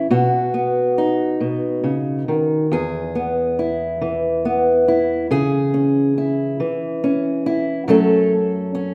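Set in 6/8 with a straight feel, this short folk fragment is cut from a longer piece and carries a hopeful, pastoral mood. A single fingerpicked, ladder-braced acoustic guitar plays alone throughout, reaching from its low E2 up to B4. Its tone is dark and woody with a boxy character and the sound of old strings, and it sits up front in the sound. The harmony moves from B to E, then to C#m at 5.3 seconds and F#m at 7.9 seconds. A wet recital hall reverb with a 1.7-second decay surrounds the guitar, giving it the resonant air of a church or concert hall.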